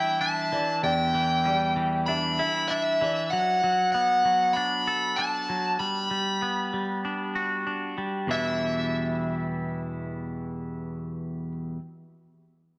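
A smooth, overdriven lead guitar carries the melody up front in this brooding, cinematic rock fragment at 97 BPM in E minor, tuned slightly flat to A4 = 436 Hz. A bright, clean, twangy electric guitar plays compressed arpeggios beneath it. A soft, felt-muted upright piano adds mellow arpeggios in the background only until 3.3 seconds, all three parts carrying slapback echo inside a lush hall reverb as the chords move from Em7 through Bm7/F# and Gmaj7 back to Em7.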